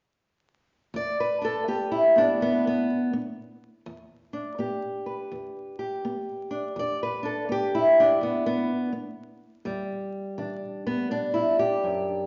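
A dark, crackling vinyl sound with a soft top end and a large studio reverb gives this short excerpt the air of an old record made by players in one room. It is acoustic country blues with a mournful, soulful mood, moving at an unhurried swung pace in four. A lone fingerpicked guitar, an old ladder-braced instrument with aged strings, carries the whole piece, sitting up front with a woody, boxy tone. It enters at 0.9 seconds and ranges from its low E up to D5, resting on a single Em7 harmony through to 12.3 seconds. The result is an intimate, brooding fragment cut from a longer performance.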